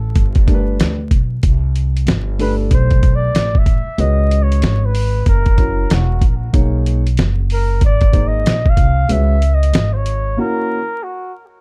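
Cool and smoky, this short jazz-hop cut from a longer hip hop piece rides a swung 94 BPM groove, with a gritty, pitched-down boom bap drum kit and a woody pizzicato upright bass up front, a mellow concert grand piano with audible action noise underneath, and a vintage flugelhorn entering at 2.4 seconds to solo with vibrato and scooped notes through plate reverb, all under vinyl crackle until a break at 10.4 seconds.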